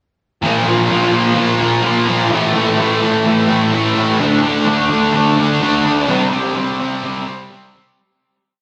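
A double-tracked fuzz guitar enters at 0.4 s, bright and distorted, strumming picked power chords on Bb5, A5, D5 and C5 with whammy-bar dips over a straight 127 BPM rock pulse in 4/4. Lush chorus and tape echo color the up-front guitar, while a long hall reverb soaks the mix in a dreamy, brooding haze. The brief piece fades out from 6.1 s to its close at 8.0 s.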